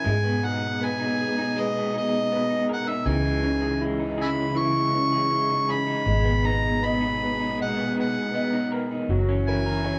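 An overdriven, gritty harmonica carries the melody up front in this reflective, heartbroken acoustic folk-pop ballad in G# minor at 80 BPM, its amplified pop-style solo flecked with tongue slaps. A slightly broken-up, lo-fi electric guitar through a small old amp plays fingered arpeggios with tremolo. Alongside them sit a woody upright piano with short sustain in the background, lush bowed strings with vibrato and portamento, and a round, foam-muted electric bass entering at 0.1 s, all in a live-room ambience moving from G#madd9 to C#madd9, back to G#madd9 and ending on F#7.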